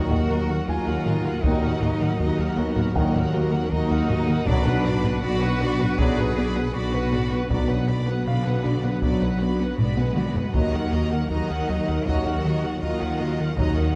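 A barely audible, huge impact opens this tense, futuristic hybrid orchestral and electronic film cue at 79 BPM in Eb harmonic minor. A distant solo cello with delay carries the melody alongside a lush violin section with portamento, while a smoother, focused violin section sings a second line over soft viola accompaniment and sustained chords from a very quiet trombone section, roomy French horns and a deep, moody analog pad. Beneath sit ringing, harp-like synth arpeggios, a rubbery square bass riff, mellow tuba, a distant double bass section and very quiet cellos, with a clear, polished piano texture until 10.6 s and a taiko ensemble on hard sticks that plays a fill at 9.8 s, all moving from Ebm to Bm at 4.5 s in a dark scoring-stage reverb.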